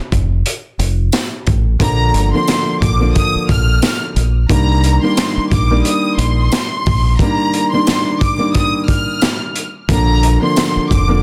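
Boom-bap hip-hop excerpt with a dark, gritty mood and a swung feel, opening on a brief break where a saturated, punchy breakbeat kit with a high-tuned snare and a round, deep dub fingered bass play before a jingly tambourine slips in behind them at 1.1 seconds. At 1.8 seconds a boxy, short-sustained grand piano with cassette-tape colour takes up accompaniment in the low-middle register, while a distant, lush violin section sings a high, bowed melody with vibrato through tape echo. The mix is dense and heavily limited with light reverb, the drums, bass and piano sitting up front as the harmony moves from Bb to Cm7 and back.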